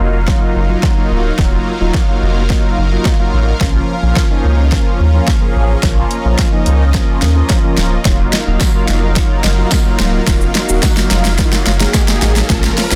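Bittersweet and energetic, this dance-pop excerpt in Eb minor moves at 108 BPM as a build-up over Ebmadd9 and Bbm chords, with a deep, round sine sub bass up front from the start and punchy, overdriven deep house drums joining it up front at 0.3 seconds. A mellow synth brass carries the accompaniment with a dark, detuned sawtooth tone, chorus, vibrato and a filter sweep, while a lush, bright supersaw pad sustains chords through a phaser, both pad and bass pumping with sidechain. A jingly tambourine appears in the background at 8.6 seconds, and a very quiet riser enters at 10.5 seconds, all within a dense, heavily limited, dry mix.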